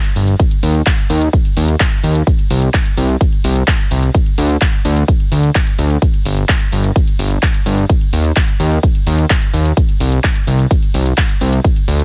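A fat, thick sawtooth bass sits up front from 0.2 seconds, its detuned tone sustained with a fast attack, a filter sweep and sidechain pumping that drives this euphoric, anthemic festival progressive house passage cut from a longer piece. Alongside it, a punchy, layered electronic kick joins up front at 0.4 seconds, while a lower-level produced dance kit of handclaps, hi-hat and ride cymbal runs throughout in a straight 4/4 feel. The whole sits in a digital ambience.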